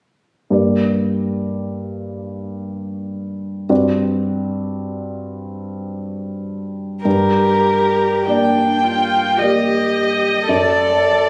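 Elegiac and solemn, this slow romantic movement for piano trio in G minor moves in a rubato 3/4 at roughly 46-59 BPM, and it is cut from a longer piece. A baby grand piano opens alone at 0.5 seconds with intimate accompaniment, its mechanical action noise audible and its sound present and up front as the harmony moves from G minor toward D7 over G. The cello enters at 7.0 seconds with a second line in its upper register, played sul tasto by one player with light vibrato, a soft attack and an airy bow that sounds close. A moment later, at 7.1 seconds, the violin takes the melody as the second part begins, its bowed tone smooth and even with vibrato, placed up front yet with a distant quality. The harmony returns to G minor and closes on D over F sharp. A wet recital hall reverb surrounds the trio, and the recording was captured on a phone in the room.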